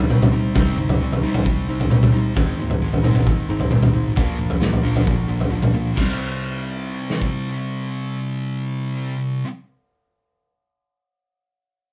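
A bright, fingerpicked steel-string acoustic guitar sets up arpeggios in the background, complete with finger squeak, while a thick, dark fuzz guitar drives a distorted riff up front over a very quiet, round, foam-muted electric bass, all in a brooding, angsty C minor alternative rock groove at 133 BPM moving through Cm, Ab and Bb. A loose indie drum kit, lo-fi and muffled with dark cymbals, a tight kick and gritty saturation, sits prominently in the mix until 7.3 seconds, its crash, snare and toms heard in a single room with light reverb. The passage shifts into a new section at 6.0 seconds, returning to Cm before the excerpt cuts off at 9.5 seconds.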